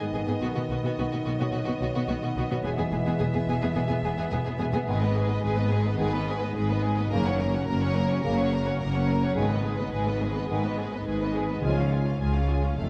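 Bowed strings, trombones and harp open together in this soaring, triumphant excerpt of a heroic adventure film score at 107 BPM. A focused chamber violin section carries the melody with vibrato over a lush symphonic violin second line with expressive portamento, a distant viola accompaniment, background trombone chords, and ringing, fingerpicked harp arpeggios. Cellos and a clear double bass section, the basses entering at 0.1 seconds, anchor the low end as the chords move through B, E, G#m and F#; very quiet timpani with hard mallets sound from 11.6 seconds under the closing C#, all set in a dark production with a wet scoring-stage reverb.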